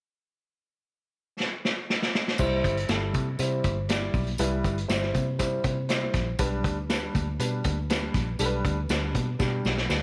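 A gritty, saturated vintage drum kit with dark cymbals and a tight kick opens this joyful, uplifting 120 BPM 1960s-style soul excerpt in C major with a fill at 1.4 seconds, and at 2.4 seconds a woody upright piano, a round, foam-muted fingered electric bass, very quiet thick-skinned congas and a jingly tambourine in the background join over C moving to G at 6.4 seconds, all in a light studio reverb before another drum fill at 9.4 seconds.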